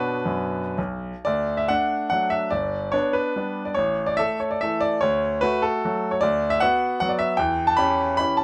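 Wistful and capricious, this short passage cut from a longer piece is a romantic triple-time dance for solo piano, its dotted rhythms pulled about by a free, rubato feel. A bright grand piano carries the whole piece alone from start to finish, ranging from deep bass notes up into its upper register. The tone is brilliant and polished, with long sustain and the faint sound of the instrument's action audible beneath the notes. Close, detailed microphones place the piano up front in an intimate, present space with only light reverb. After a brief opening phrase in a minor shading, the music moves into a new section at 1.3 seconds, where the harmony drifts through brighter major chords before darkening again and settling on an unresolved, searching chord at 7.4 seconds.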